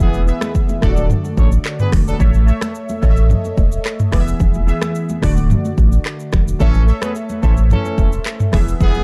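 Afrobeats excerpt with a sunny, breezy feel, where round, detuned analog keys with chorus and phaser ride over a deep sine sub bass and a crisp, up-front electronic drum kit of snaps, claps, rim clicks, shaker and toms, while background congas add bright hand-struck color and a distant, roomy horn section with tape echo appears from 0.0 to 2.1 seconds and returns at 6.6 seconds, all in a dark digital ambience.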